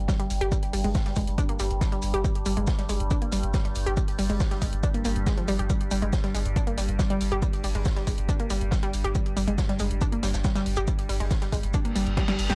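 A dry, gritty small-room recording with transformer saturation carries this dark, industrial excerpt of driving peak-time techno at 139 BPM, where a punchy, tape-toned kick sits up front beside a thick, overdriven sub bass on G1, a sawtooth drone with moving overtones and chorus stretching from G2 to G3, a bright, wave-folded unison pluck riff ranging F3 to G4 through analog delay, punchy, tape-warm analog drum-machine hi-hat and snare, a dark, smooth, high-passed acoustic kit of hi-hat, shaker and medium-tuned snare, and a reverse cymbal rising from 11.9 seconds into a drum fill at 12.2 seconds.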